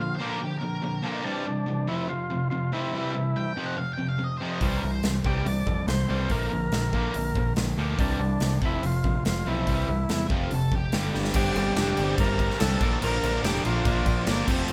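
A gritty, overdriven tonewheel organ carries the melody from the first second, its percussive key click and vibrato riding over two picked guitar riffs, one bright and crunchy, the other a sludgy, background growl, while a dark octave-fuzz lead guitar traces a second line until 5.1 seconds and returns briefly around 10.1 seconds. This is swaggering, confident classic rock in C mixolydian at 142 BPM in a straight 4/4, built on a churning progression that moves through Bb, Cadd9, F5 and C. At 4.6 seconds a big, polished rock kit arrives up front with a punchy kick, medium-tuned snare, bright cymbals and hi-hat, joined by a direct, bright picked electric bass anchoring the low end. A drum fill at 11.1 seconds leads into a new section built on Gsus4 and Bb, where a soft, flute-like organ on a slow rotary speaker adds very quiet sustained chords and a faint, double-tracked crunchy guitar riff slips in underneath. 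The band sounds like it is playing live together in one room, with moderate studio reverb lending the fragment a sense of space.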